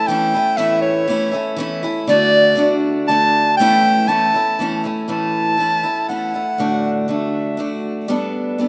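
Acoustic folk in a gentle, warm 3/4 at 120 BPM in A mixolydian, this short cut from a longer piece sets an up-front soprano saxophone, singing a classical-style solo melody with light vibrato until 7.8 seconds, over a bright, picked parlour steel-string guitar accompaniment that moves from A through D and D/A to a closing Gadd9 at 8.1 seconds, all bathed in a lush hall reverb within a rough home demo mix.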